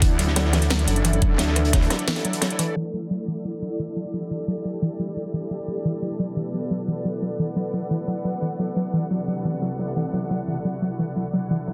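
Dark, tense technical drum and bass in which a knocking electronic kick, a layered kit with cracking snare and metallic hats, and a smooth, rolled-off breakbeat kit play alongside a saturated, wobbling FM bass until all drop away by 2.8 seconds, leaving a deep, detuned analog pad, a blurred granular cloud pad and a lo-fi, warbling pluck arpeggio under a filter sweep, all pumping with the sidechain in a lush hall.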